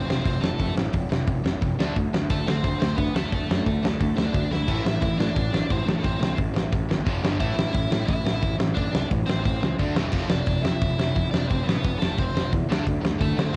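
Angry, aggressive punk rock cut from a longer piece, with a biting overdriven guitar carrying the melody over a sludgy, double-tracked distorted guitar riff set in the background, a growly fuzz-picked electric bass, and a big, dark rock drum kit up front with a fat snare, punchy kick and rolled-off top that breaks into a fill at 4.5 seconds, all captured as a dry home cassette recording.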